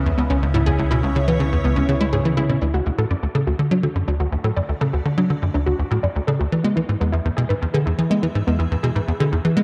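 A tight, punchy sequencer bass sits up front and drives this luminous, expansive stretch of ambient space music, its sawtooth and square-wave riff shaped by a filter pluck, a moving notch, analog chorus and tape echo. Above it, a lush, detuned unison pluck spins arpeggios through tape echo, and from 2.6 seconds a filter sweep moves across its sound. An evolving wavetable pad holds sustained, morphing chords in the background, bright and ring-modulated, washed in ensemble chorus, built-in reverb and phaser. For the opening seconds a deep, round sine sub bass and a very quiet, bubbling texture of resonant random filter steps fill out the bottom and top before both stop at 2.6 seconds. The cut moves at 123 BPM in a straight 4/4 in D lydian, passing from C#m7 to D and then E, in an echo-heavy, cassette-tinged mix with moderate spring reverb.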